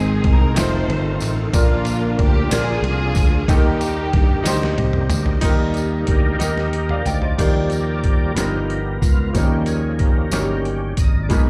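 Heard through a club PA with light room reverb, this short slice of slow, reverent gospel in 6/8 opens with veiled, muted strings carrying the melody until 4.8 seconds, over a clear baby grand piano with short sustain and a thick, overdriven tonewheel organ turning on a slow rotary speaker. A round, punchy fingered electric bass sits up front beside a compressed, pitched-down boom bap drum kit with a thumpy kick, joined at 0.6 seconds by a jingly, close tambourine. After a drum fill, the gritty organ takes a soulful solo from 5.4 seconds to the end, moving through seventh-chord harmony.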